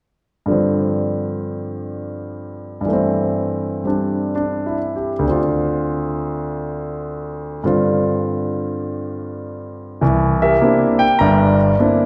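Swung eighths at 101 BPM in 4/4 carry this playful solo jazz fragment in C mixolydian, where an up-front concert grand piano with a warm, intimate, polished tone, deep bass, long sustain and audible action noise moves through G7sus4, C6/G and Dm7 before arriving on C9 at 10.0 s, set in a wet concert hall reverb.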